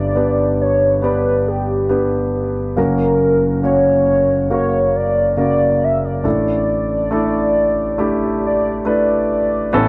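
A velvety synth lead carries the melody in this hopeful, heartfelt pop excerpt, its smooth sawtooth and triangle tone thickened by unison and chorus, with a wave-folded edge, a fast attack, sustained notes and vibrato. Beneath it, an up-front concert grand piano provides the accompaniment with deep bass and long sustain, moving from G to F# and then to Asus4 at 6.3 seconds. Light reverb and a dark, warm production round out the sound.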